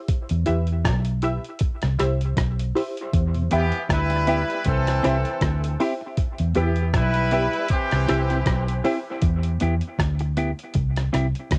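Hypnotic and meditative, this dub reggae excerpt in E minor moves at 79 BPM with a lightly swung feel, its muffled, pitched-down sampler drums (thumpy kick, hi-hat and rim click) and a dark, foam-muted fingered bass sitting up front over a slow Em to C vamp, while deep, detuned chord stabs drift through phaser, tape grit and dub echo. A mellow tonewheel organ with slow rotary shimmer touches in briefly at 3.3 seconds, just before a clear, loose horn section with vibrato and a hollow-bodied, clean semi-hollow guitar enter at 3.5 seconds, both trailing dub echo. The whole has the hazy, lightly reverberant character of a home cassette recording.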